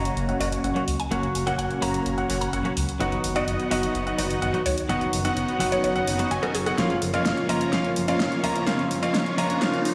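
A straight 4/4 pulse at 127 BPM drives this uplifting, triumphant festival progressive house build-up, cut from a longer piece, with an overdriven pop drum kit of fat snare and hi-hat that breaks into a fill at 6.8 seconds while a very quiet electronic riser creeps in at 7.8 seconds. A huge, dense compressed supersaw riff sits over a thick, menacing detuned saw bass, as filter sweeps run through the supersaw, the brilliant baby grand piano arpeggios and the airy, chorused unison pad holding sustained chords over F#, B/F# and A#m/F#. A twangy clean electric guitar with vintage sampler grit and a woody, round mallet-like synth pluck with delay fill out the harmony and melody, all set in a lush hall reverb that sounds as though played on a big sound system in a bare room.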